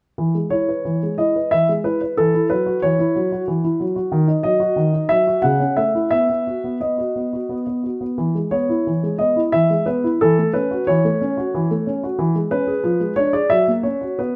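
A warm, up-front concert grand piano with deep bass opens this playful, graceful classical-period sonatina excerpt at 0.2 seconds, playing alone in E major at 90 BPM in a rubato 3/4, ranging from C#3 to F#5 through chords such as D#m, A/C# and Fdim7 before settling on F#7 near 13.5 seconds, captured by close, detailed microphones in light reverb.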